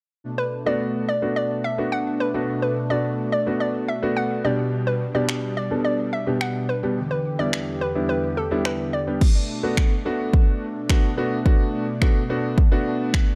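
A soft, airy supersaw opens this energetic dance-pop excerpt in B minor at 107 BPM, holding mellow, detuned sustained chords that pump gently with the sidechain. Moments later a hollow, bouncy square-wave pluck carries the melody up front, its fast attack decaying into chorus shimmer and tape echo, while a smooth, vintage grand piano settles in as accompaniment. The harmony moves from Bm7 through G/B to Em7 before returning to Bm7. At 5.3 seconds a punchy, layered electronic drum kit arrives with kick, finger snaps and crash cymbal, its overdriven grit pushed forward to give the track a driving lift. The pluck melody drops out at 9.0 seconds, leaving piano, pad and drums to carry the closing section under light reverb in a dark, warm production.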